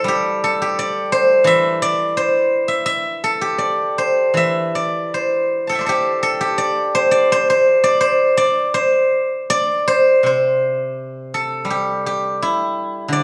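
A solo steel-string zither, bright and silvery with fingerpicks, rings up front in a flowing, elegant Chinese traditional excerpt in the C gong mode, moving in a rubato 2/4 around 77-88 BPM across a range from C3 to A5, set in a wet recital hall reverb, with a new section arriving at 10.3 seconds before the cut at 13.2 seconds.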